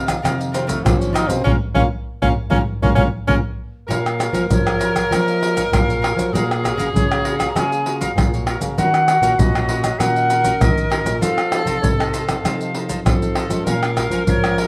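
A breathy, whispered tenor saxophone, close-miked and intimate with subtone and vibrato, opens this nostalgic yet lively samba-choro fragment with a jazz-style solo from 0.5 seconds, punctuated by a band accent, then carries on as a mellow second line once an airy, distant concert flute takes the straight-toned, tongued melody at 3.9 seconds. Beneath them, a thumb-plucked nylon-string guitar bass with finger squeak plays alongside up-front maracas, deep surdo, pandeiro and tamborim struck with hard hands in a vintage, band-limited sound. In the background, a crisp, picked cavaquinho and a fingerpicked classical guitar with fresh strings fill out the minor-key harmony, all within a light reverb.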